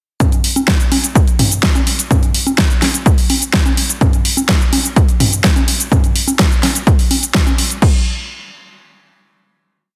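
Dense and heavily limited, with light reverb and a digital ambience, this short, bittersweet and expansive house piece runs at 126 BPM in a straight 4/4 as a single drop from 0.2 to 7.8 seconds, then a final hit that rings until 9.7 seconds. A punchy, overdriven electronic kick sits up front in a four-on-the-floor pattern, alongside a deep house drum kit with a fat, overdriven snare on the backbeat, programmed closed and open hi-hats, shaker and crash cymbal. Beneath them, a tape-warm tribal loop of high congas and low electronic toms, re-recorded in a large room, pumps with sidechain compression.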